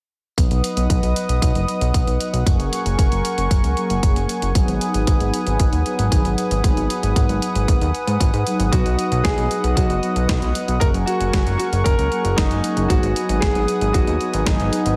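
Italo disco with a nostalgic, danceable pull, this piece moves in a straight four-four groove. A punchy, layered electronic kick sits up front, joined by a tape-flavoured, sampler-style drum machine playing hi-hat and a medium-tuned snare that sounds re-recorded in a large room. A fat, detuned sawtooth bass with a quick filter pluck anchors the low end, while a smooth, soft-attack analog pad holds chorused chords above a dark, brassy synth stab part touched with ring modulation. A filter sweep on an analog polysynth runs throughout as the harmony circles B, F#add9 and G#m7. At 8.7 seconds a warm concert grand piano enters with a melody, open and long-sustaining and fed through a digital delay, all within a light reverb.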